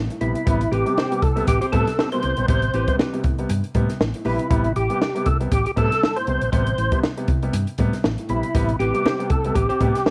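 Woody upright piano stabs and a round, hollow-body fingered bass open this cool, sly funk excerpt, joined almost at once by a compact cocktail kit with a punchy kick and high-tuned snare, plus ringing, soft-handed congas kept very quiet. Up front, a fat tonewheel organ carries the melody with light overdrive, third-harmonic percussion, chorus vibrato and a slow rotary speaker, while a mellow, clean electric guitar sits in the background from 0.7 to 4.5 seconds and returns at 8.8 seconds. The groove swings its sixteenths over a single Am9 chord, set in light reverb and studio ambience.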